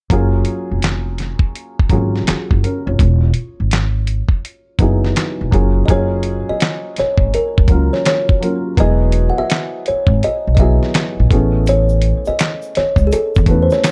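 A gritty, compressed sampler-style drum kit with a thumpy kick, fat snare, handclaps and hi-hat sits up front in this smooth, soulful neo-soul R&B piece at 83 BPM in F# major, swinging over a woody pizzicato upright bass and a dark, mellow upright piano with audible action noise moving through chords like F#maj9 and Emaj9, before a boxy, thumb-plucked kalimba takes the melody at 5.9 seconds and a background tube shaker with finger snaps joins at 11.7 seconds, in a dark production with little reverb cut from a longer piece.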